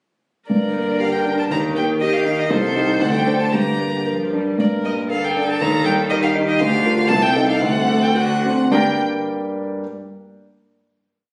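Captured on a phone in a recital hall, this short, complete piece carries a moderate hall reverb and a compressed sound. It is a quick, restless and dramatic classical-period movement for piano quartet in G minor and 2/4, moving at 104-122 BPM with a rubato feel. From 0.5 seconds, a single violin leads up front with a rich, focused, vibrato-laden melody and a smooth top. The solo viola fills the inner voices with independent lines and sustained chords that follow the rhythm of the tune. In the background, one clear cello adds an even second line, answering at phrase ends. A warm concert grand piano with deep bass sits up front, spreading broken chords across the keyboard. The theme is stated twice and slows from 6.1 seconds through a D7 cadence. The final G minor chord arrives at 8.7 seconds, and the piano rings on alone once the strings stop at 9.0 seconds.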